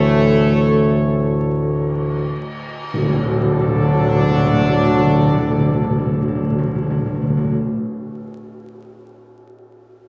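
In a straight 4/4 at 59-75 BPM that slows through the opening 2.9 seconds, this solemn, triumphant classical fanfare in D major sets a mellow trumpet section on the melody, with light vibrato and a soft attack, over sustained chords from the French horn section and a smooth-topped trombone section in the background, while a roomy, distant tuba holds the bass on D. At 2.9 seconds the ensemble strikes an accent as the harmony moves from A/D to D, and dry, up-front timpani enter alongside a bright tam-tam. A wet hall reverb and vinyl crackle surround this brief excerpt, cut from a longer piece.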